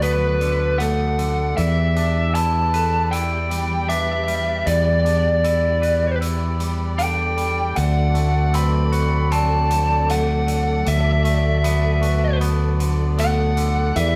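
A biting, overdriven lead guitar carries the melody up front, its bright picked line ringing high over a brooding, cathartic post-rock passage in E minor at 78 BPM in a straight 4/4. Beneath it, a growling fingered electric bass, overdriven and placed close and forward, holds down the low end. A twangy, clean electric guitar picks compressed arpeggios in the middle register, while a vibraphone played with medium mallets adds metallic, ringing arpeggios with a slow motor vibrato from the background. A lush symphonic string section sustains smooth, bowed chords behind them, and a gritty, saturated hi-hat pumps in a big room sound. The band plays live together in one room with moderate studio reverb, moving from Bm7/D to Em7, then D7 at 7.8 seconds and back to Bm7/D, in this short section cut from a longer piece.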